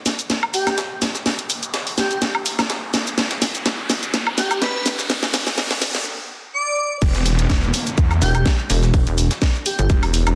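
A dense, heavily limited mix with moderate room reverb carries this aggressive, gritty bass house excerpt, where a garage kit with a cracking snare, a very quiet tape-warm sampler-style breakbeat kit and a background riser and downlifter build behind an airy, dreamy lead soaked in chorus, phaser and tape echo until a short break gives way to the drop at 7.0 s, which brings in a tight electronic kick and a swirling, detuned saw bass, joined at 8.2 s by a heavy, pulsing pluck wobble bass with overdrive and sidechain pumping.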